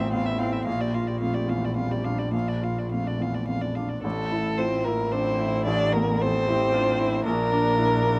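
A single muted violin sings the melody up front, its veiled, con sordino tone colored by vibrato and portamento, in a melancholic, longing neoclassical piece for piano and strings that moves freely in rubato 3/4 at around 104-116 BPM. A felt-muted upright piano gives soft, intimate accompaniment beside a distant, very quiet viola, while a background cello carries a second line with a slapback echo and a bowed double bass sits dark and close underneath. The dry outdoor sound keeps the excerpt hushed as the harmony drifts from Fmaj7/A through Bbmaj7, turning to Am at 4.0 seconds and settling on Bb(#11) at 7.2 seconds.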